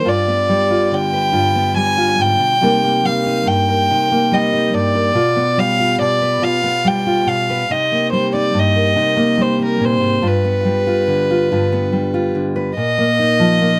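Close, detailed microphones and very little reverb put both instruments up front in this short fragment of a heartbroken, melancholic acoustic folk-pop ballad. In C minor and 6/8 at a slow 47 BPM, a single bowed violin carries the melody between Bb4 and Ab5, played sul tasto with a soft attack and a pure, floating tone. Beneath it, a fingerpicked steel-string dreadnought guitar supplies the accompaniment from G2 to B4, its fresh strings sounding bright and full-bodied. The harmony moves between G7 and Cm7, passing through G7/B, before turning to Bbsus4 at 12.8 seconds as the passage moves into a new section. Both parts play together from the opening until the cut-off at 13.8 seconds.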